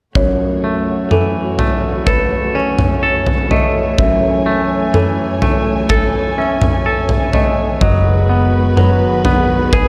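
Cathartic and melancholic, this slow post-rock passage at 63 BPM in 4/4 sits in F# dorian, cut from a longer piece and moving from F#m7 to G#m7/F# near its close. A dark, woody string section holds lush sustained chords, bowed sul tasto with vibrato, alongside a felt-muted upright piano whose soft, intimate arpeggios carry audible action noise and a slapback echo. Up front, a clean, fingered electric guitar with a twangy edge plays its own arpeggios, also touched by slapback echo. A huge arena drum kit with a hall sound drives the passage with a punchy kick and toms. At 7.8 seconds a round, amped hollow-body picked bass enters on a low F#, adding a deep, rounded floor. The whole sits in a moderate large studio reverb blended with a small room ambience.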